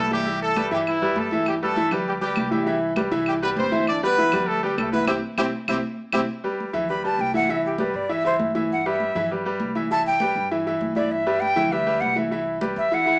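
Heard through a small-speaker sound with a moderate large-studio reverb, this joyful, danceable salsa excerpt moves at a brisk 199 BPM in a straight 4/4 over chords that mostly alternate between Cmaj7 and G6. A clear horn section carries the opening melody up front, with light vibrato and a smooth, pop-style top, while a bright baby grand piano with brilliant, intimate tone, audible action noise and short sustain supplies the accompaniment throughout. Underneath, a thumpy, woody upright bass sits low in the mix, high-tuned congas with a compressed, saturated edge stay in the background, and dry, close claves click through the first half. A full-band accent lands at 5.1 seconds, and the horns drop out at 6.2 seconds. At 6.9 seconds a breathy jazz flute with crisp chiff and a reedy, straight tone takes over the melody as a forward-placed solo, riding above the piano, bass and congas until the cut.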